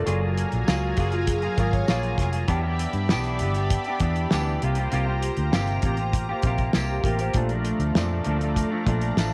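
Nostalgic and dreamy, this short bedroom-pop excerpt at 99 BPM floats on a thick, detuned unison pad and a clean, hollow-body electric guitar with lush chorus and vibrato, grounded by a round, foam-muted vintage bass with transformer saturation and a cloth-damped drum kit with a fat snare and tight kick, while a jingly tambourine sits in the background from 0.7 seconds and a dark, ringing vibraphone with tape echo appears briefly at the start and again at 6.9 seconds over chords moving from Gbmaj9 through Em7 and C7sus4 to Bbmaj7 in a small room.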